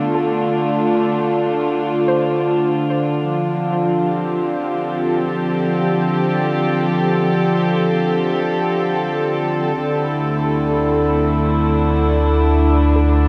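Ambient music in free time and D minor, this spacious, reflective piece is cut from a longer work and unfolds beneath a lush hall reverb with a dark production. A dark studio string section carries sustained chords up front for the whole span, its gut-string tone and light vibrato giving it a period character, while a hand-pumped harmonium holds a breathing, reedy drone on D underneath. High above, a glass harmonica adds a pure, ethereal texture in the background, its slow attack keeping it smooth. A very quiet, soft pluck traces mellow arpeggios at the opening, stops at 3.9 seconds, and returns briefly near the close. The harmony moves from D minor to F, then settles on Dsus2 at 9.7 seconds, where a round analog bass enters on a deep, evolving low D.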